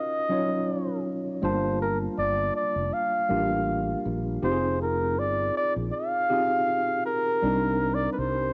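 This is a soulful, smooth R&B and neo-soul passage at 80 BPM in 4/4, with a light 16th-note swing and a G Phrygian colour, cut from a longer piece and running 8.5 seconds. An up-front flugelhorn carries the solo melody in a pop style, its tone warm, with vibrato and scooped notes, coloured by cassette tape and plate reverb. Beneath it, a bright, clean tine electric piano supplies the accompaniment; it sounds worn and slightly out of tune, as if heard through built-in speakers, and sits up front with its own plate reverb. At 1.4 seconds a fretless electric bass enters, direct and amped, growly and punchy, thickened by a lush chorus. The harmony moves through rich minor ninth chords, from Ebm9 to Gm9, Fm9 and Cm9, all in a moderate booth ambience with the intimate character of a home cassette recording.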